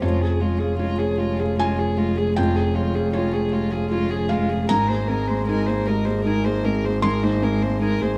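A moderate stone-room reverb surrounds a small ensemble playing live together in this reflective, fragile neoclassical fragment, rubato in 3/4 at about 77 BPM, tuned to A4 = 438 Hz. Up front, a felt-muted upright piano with thick felt and audible action noise carries the mellow, intimate accompaniment alongside a rich, floating bowed double bass played sul tasto, while a dark, woody solo violin with vibrato sings the melody over a soft, airy cello line in the background. A ringing, fingerpicked concert harp adds arpeggios as the harmony moves from Db/F to Abadd9 at 4.7 seconds.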